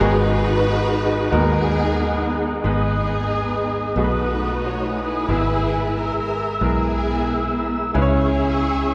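A lush, bowed string section carries the melody of this solemn, soulful gospel excerpt in 6/8, its expressive vibrato and portamento sitting up front. Alongside it, a bright concert grand piano supplies the accompaniment with a brilliant top and deep bass. A soft tonewheel organ holds sustained chords in a flute-like, clean tone, shaded by chorus vibrato and a slow rotary speaker. A fingered electric bass, dark, round, punchy and foam-muted, anchors the low end. The four parts play together from start to finish, with the harmony moving through G#m7, B7, E/G# and C#m and a new section arriving at 2.7 seconds, all set in a church reverb with a 2.9-second decay.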